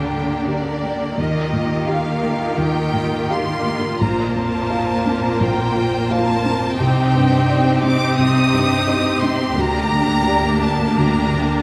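A moderate scoring-stage reverb gives this cinematic film-score excerpt a tender, moving glow, its strings and piano blooming in the room. Over a rubato pulse in 4/4, a soft-attacked violin section carries the expressive melody with a smooth, vibrato-laden top, while a second, more distant and clear violin section sings an intense line beneath it. A bright, close viola section and a rich, lush cello section fill out the accompaniment and bass, all bowed with full ensemble vibrato. A felt-muted upright piano sits prominently in the texture, dark and intimate with thick felt, short sustain and audible action noise. A very quiet concert harp adds thumb-plucked, ringing arpeggios, and the harmony drifts from Gm/D through Ebadd9, Bbsus2 and Cmadd9 before returning to Gm/D at 9.6 seconds.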